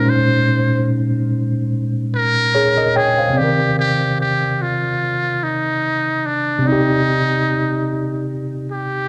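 A muted trumpet and a tine electric piano open together in this nostalgic, reflective hip hop fragment, taken from a longer piece and set at a relaxed 73 BPM with a light sixteenth-note swing in C minor. Up front, the trumpet carries a breathy, buzzy jazz-style solo with vibrato and a soft, whispered attack, while the worn, slightly out-of-tune piano sits lightly overdriven with a cassette tape character, as if heard through built-in speakers. A dark, warm production and a small room ambience frame the harmony as it moves from Bbm11 to Cm9 at 3.4 seconds.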